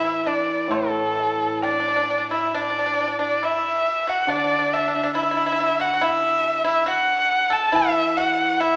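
A single bowed erhu sits up front and close, carrying the melody with a warm, intimate tone, a light vibrato, soft attacks, sliding portamento and an airy bow. This short, festive yet graceful passage of Chinese traditional chamber music, cut from a longer piece, moves at about 70 BPM in 4/4 with a free, rubato feel, tuned slightly low to A4 = 439 Hz. Beneath it, the pipa plays a second line in a lower register, its fingerpicked sound bright, dry and percussive. Further down and quieter, the hammered dulcimer gives a shimmering, ringing accompaniment. A very quiet woodblock with a dark, small-room character taps in briefly from 0.7 to 1.8 seconds, and the music moves into a new section at 2.5 seconds. A moderate recital-hall reverb surrounds the ensemble.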